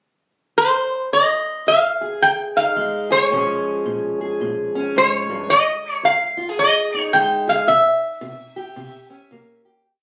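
Acoustic country blues in F minor, this short, mournful and soulful piece moves at 110 BPM in 4/4 with a swung eighth-note feel. A metal-body resonator slide guitar carries the melody up front, its metallic, nasal voice played with fingerpicks and slide, shaping motif-based song phrases that sit between C5 and G5. It enters at 0.6 seconds over a brief pickup before the head begins at 1.1 seconds, where a fingerpicked steel-string acoustic guitar joins in accompaniment. That parlour guitar sounds dark, woody and boxy with old strings, keeping a steady, palm-damped thumb beneath the slide at a lower level. The harmony moves from Fm7 to Bbm7 and back before landing on C7b9, as the piece fades out from 7.7 seconds. The sound carries the intimacy of a phone recording made in the room, with moderate booth ambience, added studio reverb and compression.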